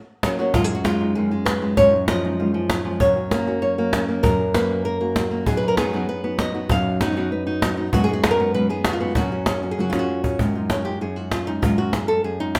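Festive and proud, this flamenco excerpt sets a bright, boxy, fingerpicked lead guitar up front, with audible finger squeak, over a woody cajon with faint snares and a thumb-plucked second guitar adding warm stabs in the background, all in light reverb, as a drum fill at 9.9 seconds leads into a nylon-string guitar solo from 10.4 seconds.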